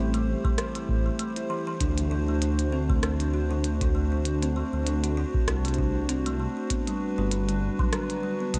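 A dark, detuned saw bass rumbles up front with tube saturation in this eerie, glitchy IDM piece at 98 BPM, swung on the sixteenths and moving from Am7 through D7 to Gmaj7. A buzzing, woody kalimba plays arpeggios through digital delay over a hollow, flute-like pad of sustained chords with chorus, while a glitchy kit of clicky hi-hats and rim clicks enters at 0.1 seconds. A deep, tape-warm electronic kick sounds from 0.4 to 7.9 seconds, and the whole is set in light reverb and digital ambience.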